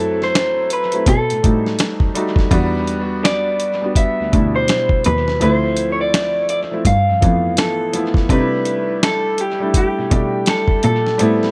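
A 16th-note swing at 83 BPM in 4/4 carries this sensual, relaxed R&B and neo-soul excerpt, where a gritty, compressed sampler-style drum kit with a thumpy kick, medium-tuned snare, hi-hat and finger snaps enters up front at 0.2 s with dub echo, a single bowed cello plays a focused, boxy bass line with vibrato, an intimate grand piano with audible action noise and long sustain carries the chords through its own dub echo, and a dark, slightly broken-up electric guitar through a small old amp picks a prominent lo-fi melody over a progression from F#m7b5 and B7b13 to Em9, Dm7, G13 and C6 in a dry, echo-heavy mix.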